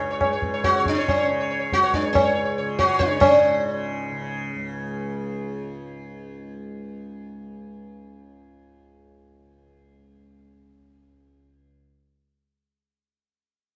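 An up-front, plectrum-plucked sitar with buzzing sympathetic strings opens this meditative, serene Hindustani classical fragment over a bright, softly plucked, shimmering tanpura drone, while a low-tuned, ringing tabla, close and dry, joins almost at once and drops out at 3.4 seconds as the tempo quickens from 141 BPM in a straight 4/4 under light reverb; the sitar falls away at 6.3 seconds, leaving the tanpura alone until 11.7 seconds.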